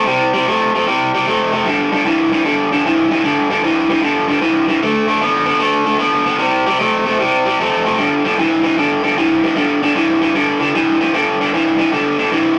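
Alone from the start, an overdriven electric guitar plays a rollicking, gritty blues in G major at 152 BPM, swinging its eighth notes in 4/4 and moving through C5, G5 and D5 power chords in the low-to-middle register. The picked tone is bright and up front, set in a small room with moderate reverb and the rough, saturated character of a rehearsal-room recording. A brief new section arrives at 11.2 seconds before this short cut from a longer piece ends at 12.6 seconds.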